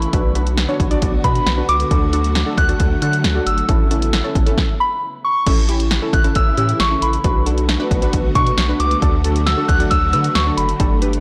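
Synth-pop with a bright yet wistful mood, this short passage moves in a straight four-four pulse over a progression of Bm7, D and Aadd9 that reaches A before returning to Bm7 and D. A punchy analog drum machine sits dry and up front with kick, snare, hi-hat and crash. Beneath it, a round, deep analog bass with a fast attack and transformer saturation anchors the low end. A funky polysynth comp built from detuned sawtooth and square waves adds filter-plucked chords with a moving notch and chorus, while a silky, vintage string machine holds slow-attack chords under ensemble chorus. Over the top, a soft FM synth bell carries the melody in pure, decaying tones coloured by chorus, phaser and tape echo, and the whole recording sounds blown-out and overdriven within light reverb and digital ambience.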